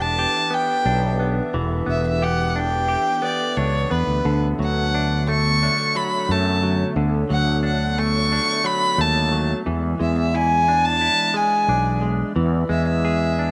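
A straight 4/4 pulse at 89 BPM carries this intimate, reflective acoustic folk-pop ballad, where a dark, woody bowed violin sings the up-front melody with vibrato over a punchy fretless electric bass, a bright, twangy clean electric guitar picking its accompaniment through spring reverb, and a hollow, flute-like pad warbling softly in the background with ensemble chorus, while a clear, airy second violin briefly adds a nasal, earthy line from 3.2 to 4.4 seconds as the harmony moves from Em7 through Bm7/D to E7 in a dry, outdoor-sounding excerpt.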